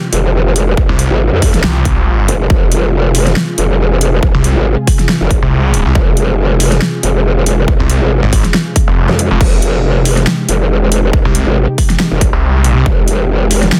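A growling, formant-filtered bass anchors this menacing, chaotic heavy wobble dubstep clip, its wobbling sine-based tone saturated, compressed and bright with chorus, holding between F1 and F2. At 0.9 s a snarling distorted saw bass joins it, a unison sawtooth with a moving notch, sitting from F1 to C2. The tempo is 139 BPM in 4/4 with a half-time feel and 55% swing on the 16ths, in F minor over a single Fmadd9 chord. A lush, thick pad of detuned sawtooth voices sustains chords from C3 to Ab4 with slow attack and long release, treated with chorus and sidechain pumping, and it sits further back in the mix. Overdriven, up-front drums hit hard: a big-room kit with huge snare, hi-hat and crash cymbal comes in at 0.1 s, and a punchy electronic kick enters at 0.8 s, both in a touch of studio ambience. The dense, heavily limited master carries little reverb, and the clip is cut from a longer piece.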